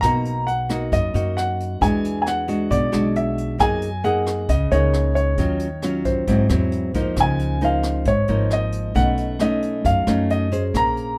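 Relaxed and sophisticated, this bossa nova moves at 134 BPM in a straight 4/4 and is cut from a longer piece, running about 11 seconds. A baby grand piano carries the melody in a high register, its tone natural with a short sustain and placed up front. A full-bodied nylon-string guitar, fingerpicked in a classical manner, supplies the accompaniment and sits equally close, while a woody pizzicato upright bass on steel strings holds down the low end. A jazz drum kit played with brushes adds hi-hat, rim click and a boomy kick from a small, natural-sounding room, sitting lower in the balance than the other parts. Light reverb surrounds the group as the harmony drifts through rich extended chords, from Cbmaj7 through Gb69 and Ab7b13 to a closing Cb9.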